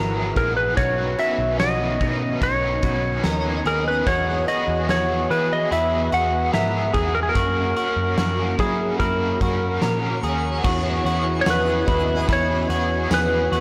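A clean, twangy lap steel guitar leads this ethereal dream pop passage, its compressed slide melody sitting up front and trailing tape echo, while a foam-muted electric bass adds a dark, round pulse with transformer saturation beneath it. Around them, an overdriven electric guitar shimmers with tremolo and analog chorus, a picked clean guitar spins chorused, echoing arpeggios, and a mellow, organ-like ensemble pad holds vintage sustained chords. At 0.4 seconds a huge arena drum kit arrives with a fat snare, punchy kick, crash, hi-hat and tambourine ringing in a big natural room. A twinkling granular texture drifts in the background, sparkling with octave-up shimmer from 2.8 seconds and again from 9.4 seconds. The harmony floats through added-ninth chords and an F# chord before settling on a sixth chord, and the whole blown-out, overdriven recording is bathed in a moderate shimmer reverb, giving this fragment of a longer piece a hazy, floating glow.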